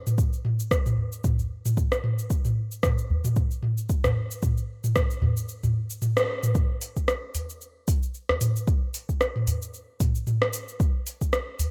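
A gritty, overdriven afro-pop drum kit opens this short downtempo passage, its metallic hi-hats, cabasa, rim clicks and toms sounding electronic and up front, joined almost at once by a deep, overdriven electronic kick, both re-recorded in a small room. The small, close udu enters at 1.0 seconds, adding an acoustic layer to the mystical, hypnotic swing of the groove, while the kick drops out from 5.5 to 6.5 seconds around a band accent at 6.2 seconds that leads into the second section. The whole has the light reverb and rough feel of a home demo, cut from a longer piece.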